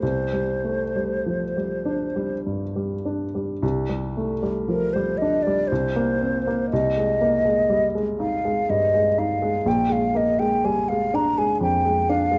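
An airy, hollow concert flute carries the melody with gentle vibrato and soft attacks, sitting up front in this wistful, mysterious impressionist classical duo in C minor, moving in a rubato 3/4 at roughly 48-65 BPM. Beneath it, an intimate grand piano with audible action noise and short sustain supplies the accompaniment, its harmony drifting from Csus2 through Abmaj7/C toward a Bb7 at 9.7 seconds. Close, detailed microphones capture both players in a moderate scoring-stage reverb, and the fragment is cut from a longer piece.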